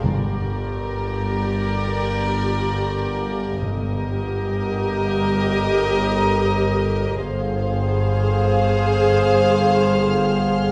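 Heard from farther back in a wet recital hall, this eerie, tense suspense film-score excerpt in free time has a clear, floating violin section carrying the melody over a soft-attack second violin line, an intimate vibrato viola accompaniment, a dark cello and double bass bass line, all bowed sul tasto, while an evolving sawtooth-and-sine drone with chorus and moving overtones sustains in the background, very quiet hard-mallet timpani sound until 4.9 s, and a faint, high violin texture enters at 7.2 s as the harmony shifts from Gm to Fm/G.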